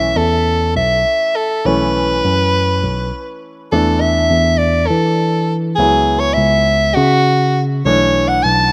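A bright, forceful soprano saxophone leads this brooding, intricate progressive instrumental, playing the melody up front with vibrato and a punchy, pop-style delivery that ranges from F#4 to A5. The band moves in 7/8 at 203 BPM counted in eighths, with a straight feel. Beneath the saxophone, a grand piano with short sustain supplies accompaniment in the middle register, while a clean electric piano, tine-voiced and heard through a combo amp, carries the bass line up front. The harmony opens on Aadd9/B and B5, then shifts at 3.7 s into a second passage moving through Esus4, C#m and Bm. Light reverb and small-room ambience frame this rough home demo mix, a cut of about 8.7 s from a longer piece.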